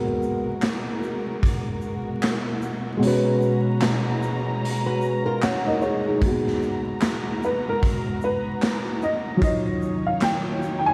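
Lo-fi hip hop with a nostalgic, hazy mood, built on a soft felt-muted upright piano with a cassette-tape tint and lush bowed strings, over a gritty, saturated garage drum kit with a punchy kick (which drops out from 3.0 s to 6.2 s) plus handclaps, shaker and hi-hat, while a fingerpicked nylon-string guitar with analog delay briefly appears at 4.9 s, and a woody, slightly detuned upright piano carries the melody from 7.4 s, all under vinyl crackle and a plate reverb.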